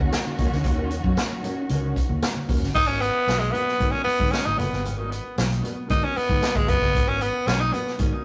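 Funk with a driving, funky mood, this short cut from a longer piece opens on a dark, lush string section holding bowed chords over a D#m7 harmony until 2.7 seconds. Underneath, a vintage muted fingered electric bass gives a round, punchy low end, while a swinging big-band drum kit sits up front with a punchy kick, medium-tuned snare, hi-hat and crash cymbal. A mellow, clean electric guitar plays fingered accompaniment in the background, and low-tuned congas with soft hands add a very quiet, band-limited patter. At 2.7 seconds, as the strings stop and the harmony moves to G#m9, a raspy tenor saxophone takes a close-miked solo up front, gritty and edgy with vibrato, scooped notes and an analog delay. The whole band sits in a moderate stone room reverb, with the rough, tube-saturated character of a rehearsal-room recording.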